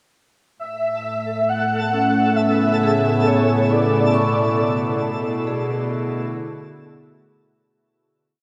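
Drenched in an enormous, cavernous reverb with a cassette-tape grain, this brief, luminous ambient piece opens at 0.6 s as a breathy, flute-like synth lead carries a free, up-front melody with vibrato and ensemble chorus, while a reedy chamber cello section fades in beneath it on a sustained root bass. An evolving, warbling wavetable pad with detuned vintage chorus shifts slowly from Amaj7 to E9sus4/B, joined by a twinkling granular shimmer on a held high note and a dark, ringing vibraphone whose slow motor vibrato and three unequal delayed loops of arpeggios drift against each other. A very quiet, tense bowed-like drone enters at 3.6 s as the whole piece begins fading out from 4.1 s.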